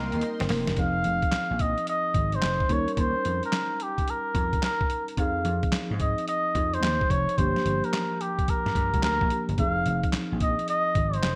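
R&B new jack swing with a slick, punchy swung groove, opening on a drum fill from the gritty, pitched-down sampler-style kit with its thumpy kick, handclaps and gated reverb, while a swirling phased analog pad and a twangy clean electric guitar sound only in the first second, as a veiled, cup-muted trumpet carries a jazz-style melody with scooped notes from the start over a tine electric piano bathed in lush chorus and a punchy vintage slap bass, all set in a bright 1980s-style digital production.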